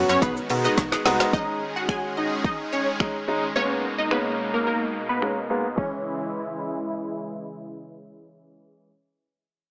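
A deep house drum kit sits up front with a deep kick, woody snare and dark hats, driving this energetic, bittersweet dance-pop excerpt at 108 BPM in C# dorian. It opens on a drop capped by a drum fill, where a snappy, metallic FM slap bass and a clean, direct-recorded electric guitar riff with subtle chorus in the background stop at 1.2 seconds, while a clear, polished baby grand piano and huge, detuned supersaw chords pump under a bright unison pluck melody colored by phaser and dub echo, the mix heard through a small-speaker sound, light digital reverb and a low-pass filter sweep from 1.3 seconds.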